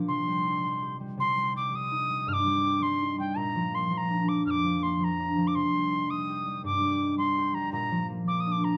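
A mellow wooden whistle carries the melody up front from 0.1 seconds, its pure, straight tone marked by a crisp, chiffy attack and rolled-off highs, played with an expressive touch high in its range. Beneath it, a concert harp provides ringing, thumb-plucked accompaniment in the lower and middle registers, moving between C minor, Cmadd9 and B-flat chords. This spirited, dark and lively Celtic jig moves at 110 BPM in 6/8 in C minor, set in a moderate studio reverb, and is cut from a longer piece.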